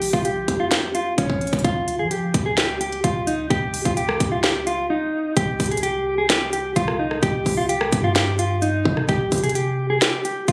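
An overdriven trap drum kit with a hard-clipped kick, sharp snare and crisp hats hits up front in a menacing, half-time hip hop groove at 129 BPM in C phrygian, while a dark, clean electric guitar carries a delayed melody over a deep, boomy 808-style bass, all caught on a phone in a club-like room, with a short break at 4.9 seconds before the harmony shifts from Bbm and Db to C5 at 5.4 seconds.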